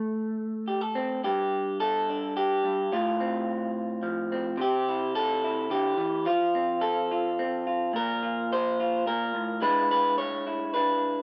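Folk in a melancholic, haunting 3/4 with a straight feel, this short cut from a longer piece features a lone electric guitar through a small old amp, twangy and slightly broken-up with a slapback echo, sitting up front in a dry outdoor recording as its chords drift from Am through F and Bb5 to a closing E7/G#.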